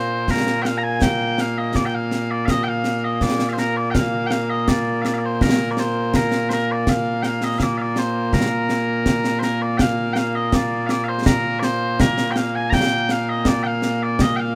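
Mellow small bagpipes open the excerpt at once, carrying a continuous, sweet solo melody in Bb major that ranges from Bb2 up to Bb5. Just after, at 0.3 seconds, concert snare drum and concert bass drum join, set up front in a small acoustic room with bright cymbals. This is Scottish traditional pipe music in 2/4 at 82 BPM with a straight feel, and its mood is ceremonial and stirring. The bagpipes also sit up front, their mellow tone heard alongside the drums in a light reverb. The same strain is heard twice, the repeat beginning at 9.8 seconds, before this short cut from a longer piece ends at 14.6 seconds.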